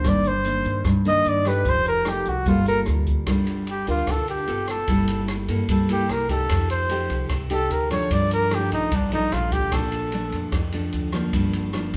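A close-miked flugelhorn with vibrato sings the melody up front in this melancholic, smooth bossa nova in G minor at 149 BPM, cut from a longer piece, stopping at 10.5 s while fingerpicked nylon-string guitar with finger squeak and a deep classical tone, woody pizzicato upright bass, and an open jazz drum kit with dark cymbals, a boomy kick and rim clicks carry on to 12.0 s, the whole band heard playing live together in a moderate large-studio reverb.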